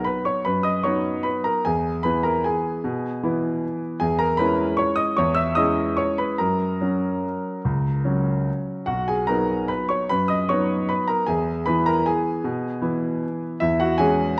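Classical piano waltz in an elegant, playful mood, with a solo grand piano whose clear, smooth, vintage tone sits up front in a moderate recital-hall reverb, flowing through a rubato triple metre across a broad range in a short passage cut from a longer piece.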